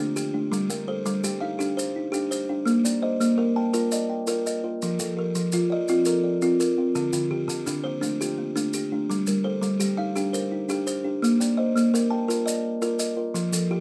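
A buzzing kalimba, woody and ringing with a hollow-box thumb pluck, sits up front from the opening moment alongside a second kalimba that is softer, darker and smoother, its short fingertip-plucked notes coming from a solid board. Together their arpeggios form a hypnotic, rippling mbira-style cycle in the southern African traditional manner, moving at 112 BPM in a straight 12/8 through D minor, G minor, B-flat and F. Grainy, mellow maracas enter at 0.2 seconds with a live-room feel, and light reverb surrounds this excerpt cut from a longer piece.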